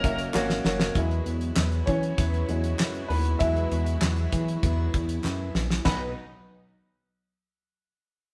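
A straight 4/4 pulse from a damped 70s drum kit with a fat snare and dark cymbals carries this uplifting, anthemic piano-driven pop excerpt, where a clear, vintage grand piano takes a solo from 1.0 to 5.9 seconds over a glossy chorused synth bass, a bright picked steel-string acoustic guitar riff and lush sustained strings in the background, with drum fills, a very quiet hollow group handclap, and a moderate stone room reverb giving the feel of a band playing live together.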